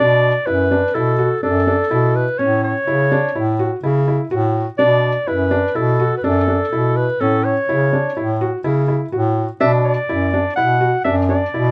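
Contemporary chamber music in an uneven 5/4 metre, restless yet hypnotic, this short passage cut from a longer piece sets a mellow clarinet melody, shaded with light vibrato, subtone and scooped notes in a jazz style, over a felt-muted upright piano playing soft, intimate arpeggios. A smooth bass clarinet carries the low line in a classical manner, sitting up front alongside the clarinet as the harmony moves between Bm7 and F#m/A before settling on Bm at 9.6 seconds. Light reverb surrounds the trio.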